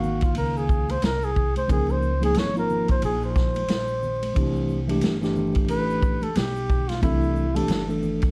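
A breathy flugelhorn leads this relaxed jazz-hop excerpt at 90 BPM, taking a solo with light vibrato and a smooth top, its tone given a slapback echo. Beneath it, a mellow tine electric piano plays clean, direct chords moving from Dbmaj9 to Cmaj9 at 4.4 seconds, while a woody, thumpy pizzicato upright bass on gut strings anchors the low end. Congas and a tube shaker sit very quietly in a small room, and a vintage drum kit enters at 0.2 seconds with a punchy kick, a medium-tuned snare, dark cymbals on hi-hat and ride, and a rolled-off top, sitting up front in the mix. The groove swings its sixteenths in 4/4 for a warm, relaxed feel. Light reverb, vinyl crackle and a dark, warm production give the whole excerpt a mellow glow.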